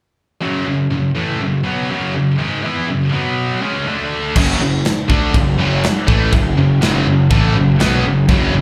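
Epic and heavy, this short heavy metal passage is cut from a longer piece and moves at 122 BPM in a straight 4/4 in F# minor. It opens with two high-gain guitars playing riffs together from 0.4 seconds, one up front and one scooped, both bright with distortion and a slapback echo, moving from F#m through B5, C#5 and D5. At 4.4 seconds the band arrives and the harmony returns to F#m. A double-tracked overdriven guitar joins in the background, a growly fuzz-picked bass sits up front, and a modern studio drum kit brings a punchy kick, a medium-tuned snare, crash and china cymbals in an airy, polished studio room sound. The recording is heard as a live gig through a venue's PA with club reverb.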